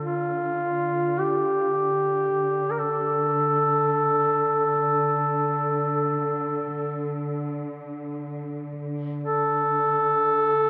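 In free time, this mournful, solemn Caucasian lament in D minor unfolds as a short cut from a longer piece, with a warm, scooped duduk carrying the folk-style solo melody up front, its vintage tone touched by delay. Beneath it, a muted studio cello section holds a dark, veiled drone on D3, bowed con sordino with vibrato and a soft attack, sitting distant in the mix. A plate reverb soaks the whole dreamy sound, and the pace slows from 6.2 seconds to the end at 10.7 seconds.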